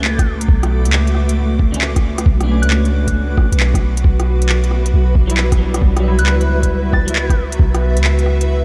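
Soaked in cathedral reverb, this dreamy, melancholic future garage fragment at 135 BPM in B minor swings its 16ths over a Bm7 to Emadd9/B change, with a blurred, detuned granular cloud pad and a round, dark 808-style bass pumping beneath a thumpy, muffled, overdriven kick that sits up front, joined by crisp hi-hats, handclaps and rim clicks. A bright, twangy clean electric guitar with analog chorus and delay plays accompaniment until 7.1 seconds, while a pure, warbling FM synth bell carries a high melody in the background through tape echo. From 4.8 seconds a very quiet, flickering grainy texture drifts in and holds to the end.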